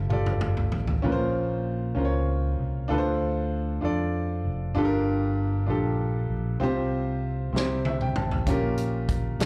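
Slow gospel in 6/8 at 65 BPM, jubilant and hopeful, heard as a live gig through the venue's PA with club reverb and small room ambience, where a clear, boxy grand piano with slapback echo and a growly fingered electric bass play up front throughout the 9.5 seconds, while a punchy, natural country drum kit with a medium-tuned snare fills from 0.0 to 1.0 seconds and returns at 7.6 seconds, just after a piano fill begins at 7.5 seconds, over chords moving from Fmaj9 through Bbmadd9, Dm7, Gm7 and Csus4 to C and Bbm6.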